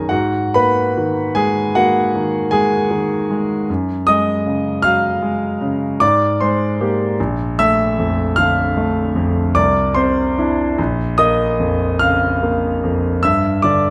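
Rubato and uneven beats in 9/8 at 51 BPM give this luminous, dreamy impressionist solo piano passage its floating pulse, as a clear concert grand with deep bass and long sustain sits up front across a span from Bb1 to F6, drifting through chords such as Abm9, Abmaj9 and Cadd9 before settling on G5 at 13.2 seconds, all bathed in a moderate recital hall reverb captured by close, detailed microphones in this brief fragment of a longer piece.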